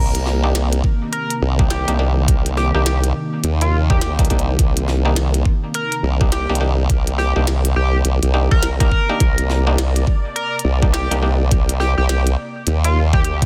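Gritty and funky, this swung glitch hop excerpt rides a single Cm7 chord, anchored by an up-front, wobbling formant-sweep bass of sawtooth and sine and an overdriven, knocking electronic kick that enters at 0.8 seconds. A glitchy drum kit adds a tiny snare, clicky hats and toms, while from 0.4 seconds a muted, stringy clav plays overdriven stabs with 12-bit sampler grit and dub echo in the background, alongside a smooth, detuned analog pad that pumps with the sidechain. On top, a bright, tearing sync lead carries the melody with vibrato, chorus, cassette tape colour and dub echo, set in a digital ambience with a dense, heavily limited modern master.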